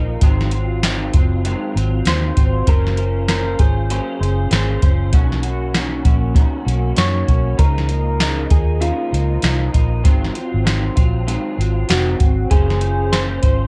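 This hazy, laid-back excerpt of indie bedroom pop has a dry, cassette-tape sound, moving at 98 BPM in 4/4 with a swung sixteenth-note feel. A soft vintage rhythm box sits up front from 0.2 seconds, its deep kick, crisp snare and metallic hi-hats carrying a tape-softened, analog tone re-recorded in a large room. Beside it, a dark, foam-muted fingered electric bass gives a round, amped low end. An electric guitar through a small old amp plays accompaniment in a slightly broken-up, picked, lo-fi tone, compressed and bathed in ensemble chorus, warbly pitch drift and plate reverb. At 2.1 seconds, soft electric-piano-like synth keys take the melody with a gentle, mellow triangle-and-sine voice, a fast attack and decaying notes, colored by lush chorus, plate reverb and a filter sweep, over a progression of Gbmaj9#11, Cbmaj9, Db69 and Ab13.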